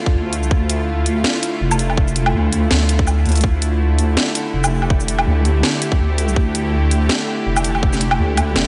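Half-time drum and bass at 164 BPM in D minor, this short cut from a longer piece feels cinematic and heavy, with a lightly swung sixteenth-note grid and a single Dmadd9 chord hanging over its 8.7 seconds. A bowed-like drone opens at 0.0 s with sustained, string-like chords built from detuned sawtooth voices and a noise layer, slow to bloom and tense, carrying vintage 12-bit sampler grit, its own reverb, vibrato and sidechain pumping. A deep, soft wobble bass enters almost at once, dark and warm with a triangle-and-sine tone, compressed and thickened with chorus, sitting up front in the low register. The electronic kick drum is tight and overdriven, while the drum kit adds a cracking snare, bright hats, shaker and woodblock, both layered, pushed forward and given studio reverb. The mix is dreamy and soaked in a lush hall reverb, with its top end rolled off for a hazy, shadowed finish.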